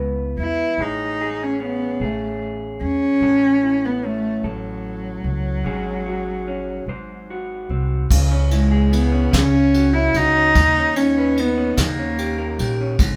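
The recording captures a band playing live in one room with a moderate studio reverb that lends a short, natural halo. This heartbroken, reflective acoustic folk-pop ballad moves slowly at 49 BPM in a straight 6/8 in C# minor, and it is cut from a longer piece. Up front, a single bowed cello carries the melody from 0.4 seconds, close and intimate, played sul tasto with a soft attack and light vibrato. An upright bass, pizzicato, woody and thumpy, anchors the low end, while an electric guitar through a small old amp supplies picked accompaniment with a slightly broken-up, compressed, lo-fi warmth. The harmony drifts from C#m7 through Amaj7 and F#m7/A to a G#7sus4 resolving to G#7. At 8.1 seconds a soft brush drum kit joins for the second section, with dark cymbals, a medium-tuned snare and a tight kick, as the chords move from C#m toward a closing D#7.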